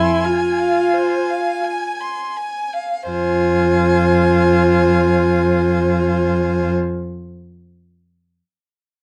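This classical excerpt, a slow romantic movement for string quartet in 3/4, feels solemn and yearning, and its rubato phrasing slows down over the first 3.1 seconds before a new section begins. A single clear violin holds the melody on a high Ab5 with smooth, even vibrato, and it sits surprisingly quiet in the balance. Beneath it, a second violin, a viola and a cello share a rich, bowed tone. The second violin traces a close, expressive line between C5 and C6 with vibrato and portamento. The viola, the loudest voice, is up front and hovers around E4 and F4 with an even accompaniment, while the cello anchors a low F2 with soft attacks, portamento and an expressive vibrato. Light reverb and a dark production wrap all four players, who sound together from the start to 6.7 seconds.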